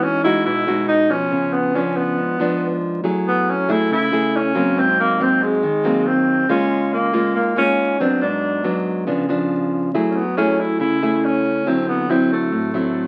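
A breathy, subtoned tenor saxophone with soft, scooped notes and a gentle vibrato carries a smooth, melancholic bossa nova melody over fingerpicked nylon-string guitar chords, moving through lush jazz harmony from Emaj9 to D9, all heard through the crackle of a very old 78 rpm record in a short 13.1-second excerpt cut from a longer piece.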